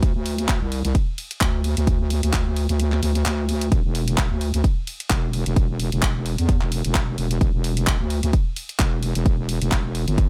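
A heavy, saturated wobble bass pumps against a punchy, up-front electronic kick in this aggressive, swaggering bass house excerpt in E minor at 130 BPM with a 16th-note swing, while a layered house kit of handclaps, hi-hat and ride cymbal sits lower in a dry mix, and the kick drops out from 2.8 to 3.7 seconds.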